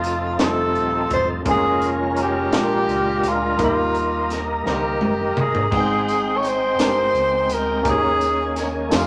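Slow gospel in 6/8 at 56 BPM, soulful and uplifting, this short excerpt puts a breathy tenor saxophone up front with a clear tone and light vibrato, carrying the melody over a polished grand piano and thick, overdriven tonewheel organ chords colored by slow rotary speaker, chorus vibrato and key click. Underneath, a round, dark fingered electric bass and a crisp, gritty drum kit with a high-tuned snare and punchy kick hold the groove, the drums taking a fill from 4.7 to 5.7 seconds before a jingly, band-limited tambourine slips in at 6.1 seconds. The harmony moves from F7 through Bb7 and Eb to Abmaj7, settling on Eb7sus4, all in a wet studio reverb with a faint mains hum.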